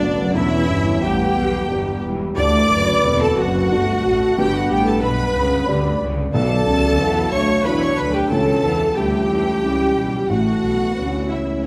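Sorrowful and bittersweet, this rubato cinematic film-score excerpt in B minor at 90 BPM in 3/4 sets a lush, vibrato-rich violin section melody over a second violin line, a dark background clarinet, a hollow distant flute section, an intense close viola section, a soft felt-muted upright piano, sustained chords from a roomy French horn section, ringing thumb-plucked harp arpeggios, and bowed cello and double bass sections, with round, soft-mallet timpani entering only from 6.3 to 7.3 seconds, all in a wet recital-hall reverb as the harmony moves from Em through C#dim to Aadd9.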